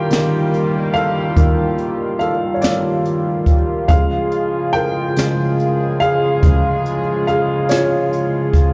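This six-eight pop ballad sways at a tender 48 beats per minute, counted in dotted quarters, in a short excerpt cut from a longer piece. A dark upright piano carries the solo throughout, its woody, slightly detuned and vintage tone full of audible action noise and lent a slapback echo. Beneath it, a shimmering, retro pulse-width pad holds slow-attack chords with chorus and a sub octave, moving from Ebadd9 to Db at 3.9 seconds. A jazz drum kit played with brushes enters at 0.1 seconds, sounding airy and polished, with a high-tuned snare, boomy kick and hi-hat. The performance comes across as a live gig heard through the venue's PA, wrapped in light reverb and club ambience.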